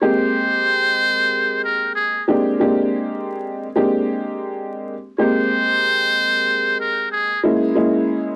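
A dry, gritty hardware sound with a bed of vinyl crackle gives this short, nostalgic hip hop fragment an intimate, close-up feel, as though cut from a longer piece. A dark upright piano carries the accompaniment for the full 8.4 seconds, its mellow, woody tone run through cassette tape so it comes across worn, boxy and slightly detuned, with the noise of its action audible up front. Over it, a trumpet with a metal mute plays a jazz-style solo melody, buzzy and thin yet brilliant, with a soft attack, a smooth top and a light vibrato. The trumpet drops out at 7.4 seconds, leaving the piano to finish alone as the harmony moves from Abmaj9 through Bb13 and back before settling on Dbm6. A relaxed 16th-note swing keeps the groove loose and warm throughout.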